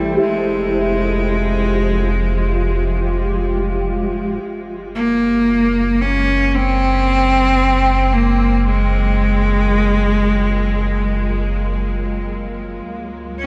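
In free time, this luminous, weightless ambient excerpt floats in a vast, echoing space. A bright, biting solo cello carries the melody up front with light vibrato, set over a deep, round sub bass and a cloudy, blurred granular pad that fades in from 4.4 s as the harmony moves from Fmadd9 to Gbadd9 and then Dbadd9. Muted, felt-like synth keys play soft, dark arpeggios in the background until 4.7 s, and a nasal analog drone joins at 8.9 s, also fading in, with shimmer reverb and delay trailing the cello and keys.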